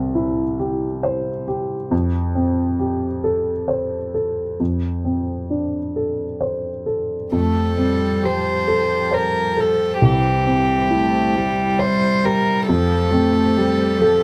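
In an unhurried, rubato 3/4 at 67 BPM, this tender, hopeful neoclassical excerpt in F major opens with a natural, up-front baby grand piano laying down accompaniment alone, until at 7.3 seconds an intimate chamber string section enters softly behind it with lightly vibrato-touched sustained chords. At 7.4 seconds a single rich, floating violin carries the melody while a warm, sul tasto cello adds a pure second line beneath, all captured with close, detailed microphones and a light reverb.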